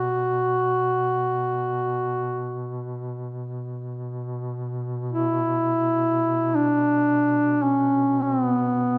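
Caucasian folk lament in free time and B minor, this brief cut from a longer piece carries a longing, solemn mood. A mellow duduk sits up front with the melody, moving between B3 and F#4 with a smooth top and a short slapback echo trailing its phrases. Beneath it, a second duduk holds a low B2 drone at a much softer level, its tone shaded with vibrato. Both instruments sound together from start to finish across the 9-second span, and the pace begins slowing down at 2.8 seconds. A moderate concert hall reverb and a dark production wrap the two reeds in a spacious, sombre atmosphere.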